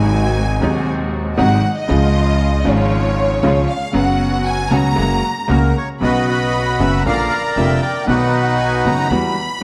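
A reedy, up-front bandoneon takes the melody from 5.5 s in this elegant, playful tango excerpt in B major, moving at 117 BPM in 4/4 with a rubato feel. From the start, a lush symphonic violin section, bowed with vibrato, carries a featured line for the first 6.0 seconds over a bright, brilliant grand piano accompaniment with short sustain, a woody, growly pizzicato upright bass, and veiled, con sordino string stabs that drop out at 5.7 s. A moderate concert hall reverb and a dark, warm production round out the sound.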